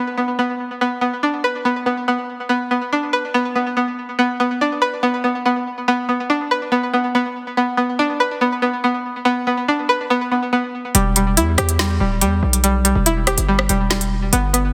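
Cold and menacing, this half-time drill hip hop excerpt opens with a twangy, nasal string-like resonator pluck playing chorused, delayed arpeggios over Bm, before a heavy, aggressive distorted 808-style bass and a drill drum kit with crisp hats, a woody, softly clipped snare and rim clicks arrive at 10.9 seconds as the harmony moves to Em, all inside a dense, heavily limited mix with light digital ambience.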